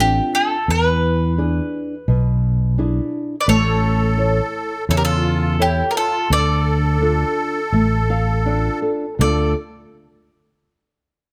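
A bright, double-strung bowl-back mandolin carries the melody up front in this longing, mournful fado-style ballad, moving in a free, rubato feel over a small, thumb-plucked nylon-string guitar and a growly, punchy fretless electric bass. A reedy, shimmering musette accordion enters with a second line at 3.4 seconds, and the guitar adds a fill at 7.7 seconds. Close, detailed microphones and light reverb give this fragment of a longer piece an intimate sound.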